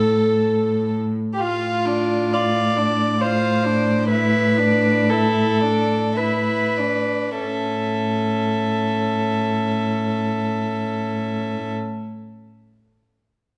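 A dark, intimate cello with vibrato and an airy sul tasto bow holds a low A up front beneath a softly floating second violin, a rich melody violin and viola accompaniment in this elegiac, solemn excerpt of a slow romantic string quartet movement in 3/4 at 46-70 BPM, played rubato and slowing from 0.1 to 7.4 seconds as the harmony moves from Dm/A through E5/A to an A chord at 7.4 seconds in a reverberant recital hall.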